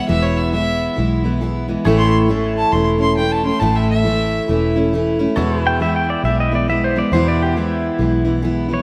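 Honky-tonk and classic country with an easygoing, sunny swing, cut from a longer piece. A clear, focused bowed fiddle carries the melody with light vibrato until 4.8 s, over a picked dreadnought acoustic guitar with fresh strings, a dark, round, foam-muted electric bass and background pedal steel chords touched with subtle chorus. At 5.7 s a clean, compressed pedal steel takes an up-front second line with fingerpicked slide and volume swells, all in a lush hall reverb with a rough home-demo feel.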